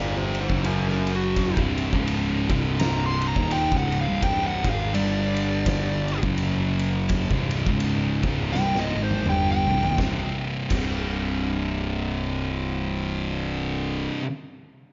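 A distorted, compressed fuzz lead guitar solo with delay carries the first 10 seconds of this brooding, hypnotic stoner and doom metal excerpt in C minor at 83 BPM with a swung 4/4 feel, riding over a thick, double-tracked fuzz guitar riff placed up front, a round, overdriven picked bass, and an oversized, low-tuned, saturated drum kit with a fat snare and punchy kick that plays a fill from 8.5 seconds, all set in light reverb with a dark, rolled-off top end.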